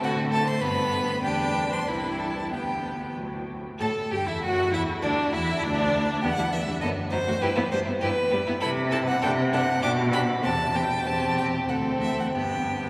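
A full string quartet opens together in a spirited, cheerful classical-period movement in 2/4 with a rubato feel, the up-front first violin singing the melody with vibrato and portamento over a soft-edged second violin line and a rich, distant viola accompaniment, while a warm cello anchors the bass, all bathed in a wet cathedral reverb and heard as a short excerpt cut from a longer piece that settles onto D7 and then G at 12.3 seconds.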